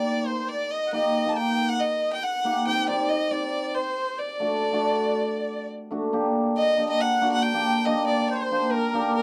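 A straight 4/4 pulse at 138 BPM drives this bittersweet, soulful klezmer fragment, cut from a longer piece and tuned slightly low, where an up-front bowed violin carries the melody with a biting, intense vibrato while a reedy, sweet accordion with light tremolo tuning plays a second line in the same register. Beneath them, a mellow, shimmering cimbalom rings out the accompaniment through a chord sequence of Eb, Cm and D before the music turns to Gm at 6.1 seconds for a new section. The sound is dry and close, a 1970s-style studio recording with a moderate booth ambience.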